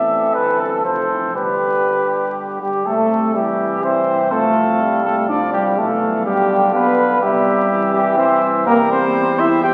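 In a straight three-beat metre, this brief, triumphant excerpt from a classical brass quintet opens on a minor-tinged phrase before settling into a bright major passage at 2.9 seconds. A mellow trumpet carries the melody while a clear, up-front second trumpet with vibrato, a soft attack and a smooth top weaves a companion line; a distant, roomy French horn and a brilliant, vintage-toned trombone in the background fill the accompaniment over a punchy, mellow tuba bass. All five play for the full 9.7 seconds, set in a wet concert-hall reverb and heard through the crackle of a very old 78 rpm record.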